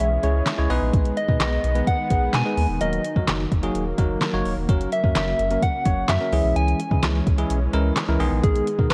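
Dance-pop at 128 BPM in C# dorian, this bittersweet yet energetic excerpt moves through C#m, G#m, D#m and F# over a straight 4/4 pulse. A gentle, round FM synth lead with a vintage, keys-like tone carries the melody, its struck notes decaying through chorus, tremolo and delay. Beneath it, a clean, bell-like tine electric piano plays accompaniment, and a lush, thick pad of detuned unison sawtooth and square waves sustains chords in the background; both, along with the deep, round sine sub bass, pump under sidechain compression. An up-front, produced R&B kit drives the groove with a soft kick, deep snare, metallic hi-hats and handclaps. A barely audible downlifter sits in the opening 0.9 seconds, and the whole mix carries light digital reverb and the worn, warbling pitch drift of old cassette tape.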